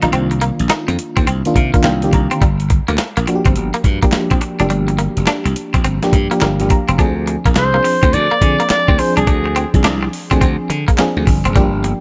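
A breathy, whispered alto saxophone with vibrato and an intimate pop tone steps up front for a brief melody between 7.6 and 9.7 seconds in this slick, bouncy new jack swing excerpt cut from a longer R&B piece. Beneath it, a gritty, compressed sampler-style drum kit with a thumpy kick, handclaps, hi-hat and snare drives the swung groove beside a growly, punchy slap bass, while a clean, picked electric guitar with lush chorus plays a riff. A dark FM electric piano with tremolo carries the chords from Cm11 to Gm7 to Dm7b5 and adds short fills, all in a dry, close-sounding mix.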